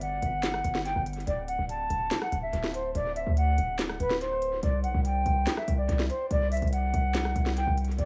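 Triumphant yet dreamy, this short excerpt of trap-flavored hip hop moves at 143 BPM in a half-time 4/4 feel. A concert flute carries the melody from B4 to A5 with a pure, straight, tongued tone, sitting up front while a low-pass filter softens its edges and dub echo trails its phrases. Beneath it, a hard-hitting 808-style bass spans D1 to D2, punchy and heavy, its saturated sine body layered with noise, with a fast attack that decays after each hit. The electronic trap kit supplies a sharp snare, crisp hi-hats, handclaps and rim clicks, its hits also trailed by dub echo. The harmony moves from a rootless C5 to D at 1.3 seconds and back to C5 at 4.6 seconds, all set in light digital reverb and an echo-heavy small-room ambience.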